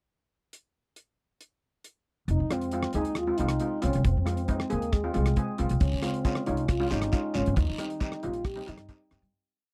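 A damped 1970s drum kit opens this brooding, cool calypso in F minor at 136 BPM, its dry, tight kick, hi-hat and rim click sitting up front in a straight calypso groove. At 2.3 s a woody, thumpy pizzicato upright bass starts a syncopated figure beneath a mellow, distant French horn singing a motif-based, classical-style melody with light vibrato. At 2.5 s a shimmering steel pan struck with hard rubber sticks adds airy, rhythmic triad chords, and a raspy, saturated guiro pattern joins at 5.8 s. The close 1970s-style studio sound, with little reverb, fades out over the final stretch as the chords move from Fm7 through Dbmaj7 to Cm.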